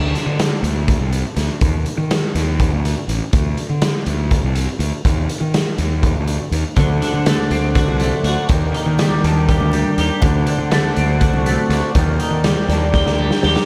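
A fuzzed, fingered electric bass opens this dark, trippy psychedelic rock excerpt, overdriven and punchy up front in a lopsided 7/8 metre alongside a raw garage drum kit whose saturated, gritty sound has a punchy kick and a rolled-off top. For the first stretch the two hold the groove over a Csus2 harmony that alternates with bare, chordless passages. At 6.8 seconds the texture fills out as a twangy twelve-string electric guitar enters with a riff, clean and picked, double-tracked and coloured by a phaser. A mellow, vintage combo organ joins at the same moment with sustained, overdriven chords touched by light vibrato, while very quiet, thin-skinned congas sit low in the mix. The harmony now swings between D7 and Ebmaj7, and a drum fill at 12.9 seconds closes the passage in a small, lightly reverberant room.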